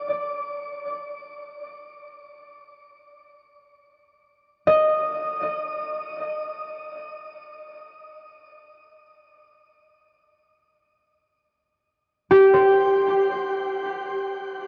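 A mellow, ringing concert harp, thumb-plucked and up front, carries this weightless, warm ambient excerpt in free time, playing solo between G4 and Eb5 from 0.0 to 6.5 seconds and returning at 12.3 seconds through a diffuse ambient delay, while a Gsus4 chord arrives at 10.8 seconds and a shimmering 6.9-second reverb and worn, warbling cassette-tape pitch drift color the sound, tuned to A4 = 438 Hz.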